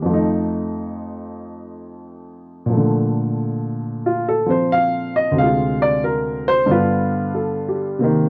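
A dry, close studio sound in the manner of the 1970s puts a baby grand piano up front, its tone warm and natural with a short sustain. This is solo jazz in Bb major at 91 BPM in 4/4, swung on the eighth notes, and its mood is relaxed and sophisticated. The piano is the only instrument, ranging from D2 up to F5 across this brief fragment cut from a longer piece. It opens over an F7 before settling onto Bbmaj7 at 2.7 seconds, where a new section begins and the piano takes a solo through to the end at 8.3 seconds. The harmony then moves through Dm7b5 at 5.4 seconds and on to G7 at 6.7 seconds.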